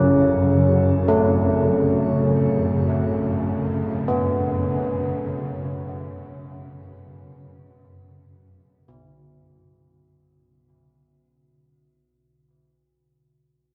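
A cavernous, wet cathedral reverb with a 5.1-second decay surrounds this ominous dark ambient fragment, cut from a longer piece and fading out from its opening moment. Up front sits a swarming drone, tense, detuned and granular, whose slow-attack sine tones evolve in unison through their own built-in reverb until about 10.2 seconds. Beside it, old church bells ring out arpeggios with a bronze, clangorous character: mellow and padded at the clapper, with a minor-third overtone and audible beating, trailed by tape echo and shimmer reverb, and they are the last to sound, at 11.3 seconds. Much quieter, set far back in the mix, a dark analog pad holds sustained chords, its deep, moody sawtooth and triangle blend thickened by a sub octave and chorus. The result feels slow-breathing and foreboding, a single sustained harmony hanging in a vast stone space.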